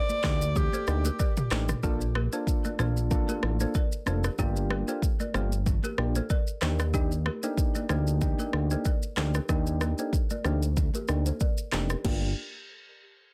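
A gently swung sixteenth-note groove in 4/4 drives this mellow, hypnotic afrobeats excerpt. A layered electronic deep house kit sits up front, with a deep kick, handclaps, rim click, shaker, toms and crash cymbal, while very quiet, high-tuned congas add a ringing, vintage shimmer underneath. A fat, thick analog bass, detuned and sustained with a fast attack, anchors the low end. A woody, dry balafon riff struck with hard rubber mallets runs throughout, darkened by a low-pass filter and echoed by digital delay. Soft, round electric-piano-like synth keys warble through chorus over chords moving from Ebmaj7 to Bbmaj7 and Gm7. A breathy, punchy alto saxophone with vibrato and delay states a brief solo phrase that ends at 1.5 s, and a filter sweep runs from 1.8 to 12.0 s, all under light reverb and a dense, heavily limited modern master.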